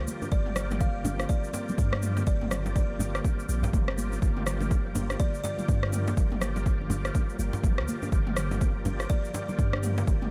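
This afro house excerpt opens on a Gm7 chord in G minor, with a buzzing, woody kalimba melody through analog delay, an ethereal pad in the background with ensemble chorus, gritty overdriven tonewheel organ stabs through a slow rotary speaker, and a deep, boomy 808-style bass, the pad, organ and bass all pumping with sidechain. Within the first 0.3 seconds a deep house kit of rim click, shaker and toms arrives along with soft-handed congas, a close, dry djembe and a punchy electronic kick sitting up front at 123 BPM with a swung 16th-note feel. The mood is warm and hypnotic, set in light reverb.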